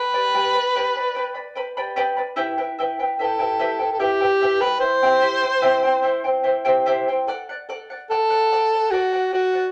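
Andean folk excerpt in 3/4, wistful and earthy, where a clear soprano saxophone with vibrato, soft attack and classical poise carries the melody up front while a fingerpicked charango, its double strings shimmering with some octave doubling, accompanies alongside in a wet studio ambience over a G, Em, C, D progression.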